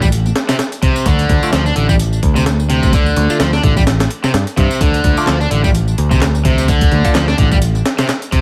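A dry, vinyl-crackled breakbeat excerpt at 128 BPM with a 16th-note swing sits on a D minor chord, playful and energetic. Up front, a gritty, compressed sampler-style kit with a thumpy kick and high-tuned snare drives alongside a picked electric bass and an overdriven, tube-saturated guitar riff with tape echo, while layered electronic tambourine and handclaps sit in the background with studio reverb, the same reverb that touches the kit. Very quiet ringing, vintage congas with hard hands tick underneath, and from 1.4 s a nasal, band-passed sawtooth chord stab with a filter pluck, phaser and moving notch adds bright, decaying hits.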